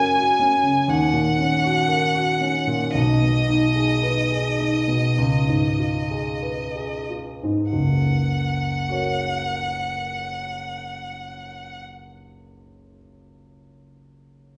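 Lyrical and serene, this romantic classical fragment pairs a violin with a grand piano in F# major, moving in a rubato 4/4 at roughly 43-61 BPM and slowing down through its first 7.7 seconds. The bowed violin, a single player, carries the melody between D#5 and G#5 with a smooth, even vibrato tone that sounds at once up front and distant. Beneath it, the grand piano supplies a polished, present accompaniment spanning F#1 to C#5, its harmony passing from F# through D#m7, G#m/B and C#7 before returning home to F# as a second phrase begins. The violin falls silent at 11.8 seconds, leaving the piano alone until 14.6 seconds. A wet recital hall reverb gives the duo a warm, spacious glow, heard from further back in the room.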